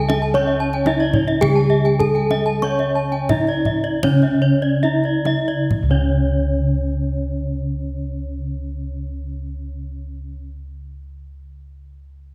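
A dark, smooth bronze metallophone carries the melody up front in this shimmering, brilliant Balinese gamelan passage in C# pelog, its horn-mallet tone ringing with the beating of paired tuning. A lower metallophone struck with a wooden mallet sits in the background as accompaniment, while two bright metallophones spin arpeggios above, one of them airy. Mellow, round bossed gongs played with padded beaters anchor the bass, and a deep, close, dry kendang adds percussion until 6.1 s as the tempo slows from about 119 to 66 BPM in a moderate stage reverb.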